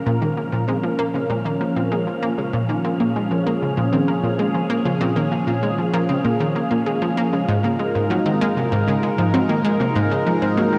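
Cosmic and expansive, this short cut from a longer piece of ambient, sequencer-driven space music settles on Bb minor before shifting to Absus2 at 7.5 seconds. Up front, a round, chorused analog pluck carries a riff with delay while a swirling, warbling phased analog pad holds sustained chords, and in the background a punchy unison pluck spins delayed arpeggios. An airy, breathy wind-like tuned noise texture hovers over it all, the whole mix soaked in a huge, dreamy reverb.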